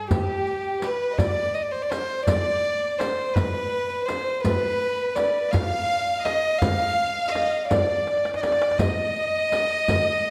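In a steady 6/8 at 55 dotted-quarter beats per minute with a straight feel, this Persian modal ensemble piece moves with a passionate, unhurried intensity. A solo bowed violin carries the melody up front and close, its gut-string tone reedy and period in style, touched by a tape echo. Behind it, a lush studio violin section bows a second line in the same register, focused and smooth on top with vibrato. The percussion sits underneath: a deep, large frame drum, a tight, warm tombak in the background, and a riq whose bright jingles sound from a small room. A drum fill arrives at 8.1 seconds, and the whole ensemble is framed by a moderate recital hall reverb in this short cut from a longer performance.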